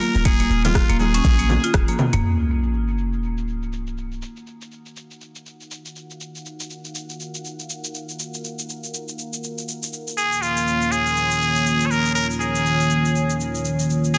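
A dense, heavily limited modern master with light reverb carries this spiritual, earthy afro house excerpt at 121 BPM with a swung feel in Eb minor, where a nasal, raspy straight-muted trumpet melody with dub echo, bright hard-mallet marimba arpeggios, ringing hard-handed congas, a boomy sidechain-pumped 808-style bass and an overdriven electronic kick ride over an overdriven afro-pop kit with metallic hats until 2.2 seconds, when a sub drop lands and a moody, detuned analog pad with chorus sustains alongside the filter-swept kit, the growling trumpet returning at 10.2 seconds.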